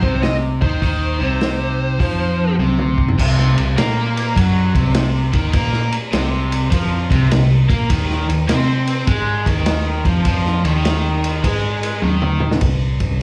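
Heavy and brooding, this clip from a longer blues rock and southern rock power trio performance moves at 102 BPM in 4/4 with a swung eighth-note feel, heard as a live gig through the club's PA with light reverb. A fuzz lead guitar carries the melody over a darker, background second line from a distorted lead guitar, both dropping out at 2.6 seconds as the drums fill into a riff-driven stretch. The double-tracked, crunchy rhythm guitar with slapback echo stays up front alongside a round, foam-muted fingered bass and a muffled, lo-fi vintage kit with dark cymbals and a tight kick, with a second drum fill at 12.0 seconds.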